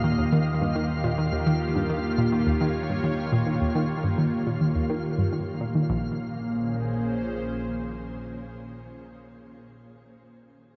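A huge, wet ambient reverb with a long tail surrounds this short clip of cosmic, expansive space music, an ambient piece driven by a sequencer at 105 BPM in a straight 4/4, set in Bb dorian and cut from a longer work. Up front, a swirling phased analog pad holds sustained, detuned sawtooth chords through phaser, chorus and shimmer reverb, moving from Ebadd9 to Bbm7 when the second section arrives at 5.9 seconds. Beside it, a bright, round analog pluck plays a low riff with a fast attack and short decay, its ring-modulated tone sweeping through a filter, thickened by chorus and echoed by delay until it stops at 6.2 seconds. Deep in the background, a warbling, vintage analog drone carries the bass with pulse-width modulation and chorus, fading out over the opening section. High above, a twinkling granular texture rings on a single sparkling note with an octave-up shimmer before dropping away at 5.9 seconds, while the pad, pluck and drone carry on into the second section.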